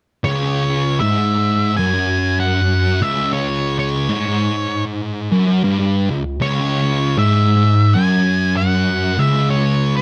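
A slow, heavy 4/4 pulse with swung eighths drives this metal fragment, giving it a hypnotic, ominous sway from start to finish. Two thick fuzz guitars play the low riff together from 0.2 s to 10.0 s, one up front and the other sitting in the background, both picked and distorted with a warm, saturated weight. Above them, an octave-fuzz lead guitar carries the melody in a higher register, its picked, distorted tone dark and gritty, with a slapback echo trailing each note. The whole passage rests on a single C# minor chord, which keeps the mood brooding and static. The sound is dry and close, in the manner of a 1970s studio recording, and the music is cut from a longer piece.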